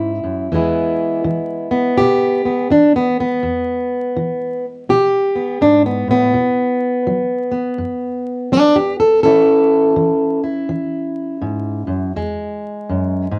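Vinyl crackle and a moderate club reverb frame this short, soulful cut of acoustic country blues, taken from a longer piece and moving at a laid-back, swung 83 BPM in E mixolydian. A fingerpicked, plugged-in steel-string jumbo guitar sits up front as the sole voice, its dark, full-bodied tone spanning from E2 to A4. The harmony drifts from E to B5 at 6.3 seconds, then on to A and back to E.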